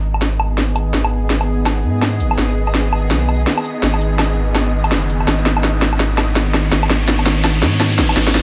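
Spacious and tense, this short cut from a longer half-time drum and bass track moves at 166 BPM in 4/4 with a swung sixteenth feel, sitting on G# minor throughout. The whole stretch is a build-up with a running drum fill, led by an overdriven electronic kit of cracking snare, bright hi-hats and woodblock, layered and placed up front with a small-room character. A deep, thick, saturated sub bass with a fast attack holds the low end alongside it. Above, a string-like bowed drone sustains detuned sawtooth chords, its slow attack, ring-modulated noise layer, vibrato and built-in reverb adding an uneasy shimmer. A grainy, flickering granular texture hovers high in the background, and from 3.3 seconds an electronic riser climbs in beneath the mix to heighten the tension.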